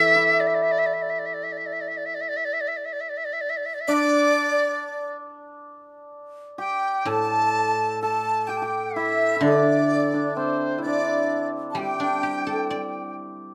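A reedy, up-front large dizi carries the melody over a breathy, unsteady second dizi, a shimmering hammered dulcimer and a silvery, fingerpicked guzheng in this pastoral yet festive excerpt of Chinese chamber music, played freely in rubato, recorded with close, detailed microphones and light reverb, and moving into a new section at 6.1 seconds.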